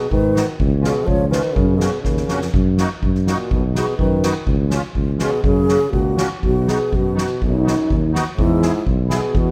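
This rough home demo, with light studio reverb, catches a bouncy, festive alpine folk dance band in 2/4 at 124 BPM, cut from a longer piece that moves from F# major into B major at 6.4 s. A breathy, close-miked alto flute with a wooden head carries the melody with vibrato and an unsteady tone. A clear euphonium plays a second line, a mellow, up-front tuba holds the bass, and a reedy, shimmering musette accordion with a vintage, band-limited sound fills in the accompaniment. A soft-mallet drum kit with a boomy kick, fat snare and dark splash cymbal plays a fill at 2.0 s.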